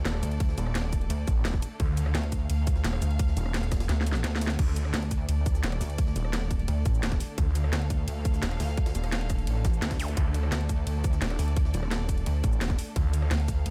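Dark technical drum and bass at 172 BPM in D phrygian, this excerpt cut from a longer piece feels aggressive and tense, riding a drop from start to finish. The low end is built from two basses: a snarling, detuned sawtooth bass that growls up front with distortion and sidechain pumping, and a pulsing, saturated pluck wobble bass with a mellow, chorused sheen. Above them, a bright symphonic string section holds lush, bowed sustained chords with vibrato, set distant in the mix and pumping with sidechain compression. The drums stack a tight, overdriven electronic kick, a produced kit with a cracking snare, bright hats, cabasa, crash and rim click, and a very quiet, gritty, pitched-up jungle sampler-style kit adding a high-tuned snare and ride. Around 3.9 seconds the kick drops out for a drum fill, leading to a band accent at 4.5 seconds just before the drop restarts at 4.6 seconds, and a brief electronic zap flickers in the background at 10.0 seconds, all wrapped in a digital ambience.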